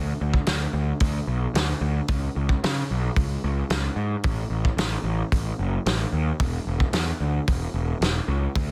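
This rock clip leans toward shoegaze and dream pop, with a blissful yet wistful mood, moving at 111 BPM in a straight 4/4 and tuned slightly low, to A4 = 439 Hz. A picked electric bass opens at 0.0 seconds, its bright, growly fuzz tone pushed hard through overdrive and sitting up front, ranging from E1 to C#3. At 0.3 seconds a loose indie drum kit joins, playing hi-hat, kick and snare in a studio room with a punchy kick, a medium-tuned snare and a gritty, saturated character with a rolled-off top. Both parts stay close and present, with little reverb around them. The dense, heavily limited modern master keeps the short section packed and forceful until it cuts off at 8.7 seconds, taken from a longer piece.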